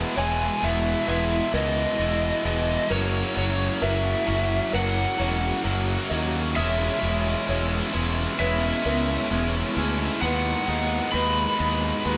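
Soaring and cinematic, this slow post-rock passage sets a slide guitar's overdriven melody, entering at 0.2 seconds, over two tight, bright distorted guitar riffs, a punchy fuzz bass up front, soft felt-muted piano arpeggios with audible action noise and a shimmering, detuned ambient pad with chorus in the background, all played live in a stone room through the chords Emaj7, F#7, C#m7/E and G#m7/D#.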